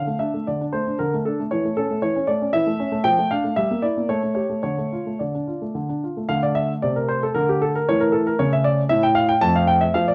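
Cheerful and playful, this short cut from a longer classical-period piano sonatina in D minor moves at 115 BPM in a rubato 3/4, with a solo grand piano sounding warm, present and up front with long sustain across F2 to A5, framed by a moderate large-studio reverb and the worn, warbling pitch drift of old cassette tape as its opening phrase returns at 6.3 seconds and settles on an Fmaj9 chord at 9.4 seconds.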